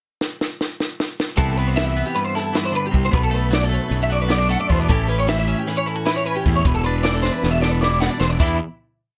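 Math rock with a midwest emo heart, this short, intricate and wistful piece moves in an odd 9/8 metre with a straight feel. A compact cocktail drum kit opens alone with a fill from 0.2 seconds, its dry, up-front sound marked by dark cymbals, a high-tuned snare and a punchy kick as it settles into the 9/8 groove. At 1.4 seconds the rest of the band arrives: a bright, twangy twelve-string electric guitar rolls through fingerstyle arpeggios, while a clean electric guitar repeats an up-front ostinato of arpeggios coloured by ensemble chorus. Beneath them, a fuzz fingered electric bass with overdrive gives a round, gritty low end that is locked to the kick drum. The harmony drifts from Cmaj7 through Bm7 and A7 to a bare E5 before another drum fill leads to a closing Em7 chord, all set in a light reverb.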